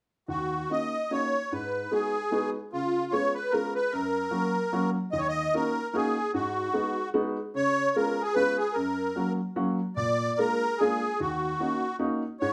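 A wet studio reverb fills the room as a small duo plays live together in this fragment of a whirling, bittersweet musette waltz in three, with a lilting swing and a loose rubato feel. Up front, the reedy, shimmering musette accordion carries the dark, smooth melody, while the woody upright piano, also close, lays down the accompaniment through minor-seventh and dominant changes. A second section begins at 5.1 seconds, moving through a Bb7 before settling back on Ebm7 at 11.2 seconds.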